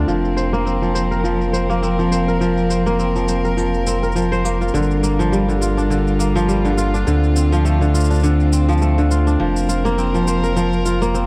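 A fingerpicked kora leads this folktronica excerpt, its crisp, ringing arpeggios sitting up front and shaded by a low-pass filter and tape echo. Beneath it, a round sine sub bass holds deep, mellow, sustained notes with a fast attack, while a distant bowed string quartet, one player per line, fills in rich chords with vibrato. An overdriven electronic cabasa joins at 0.1 seconds, its filtered sound re-recorded in a large room for a produced edge. The mood is pastoral and delicate, moving at 103 BPM in 4/4 with a gentle sixteenth-note swing in F major. The harmony passes from Fsus4 through Gm7 and Dm7 before returning to Fsus4, and the whole recording has a dry, close 1970s-style studio sound.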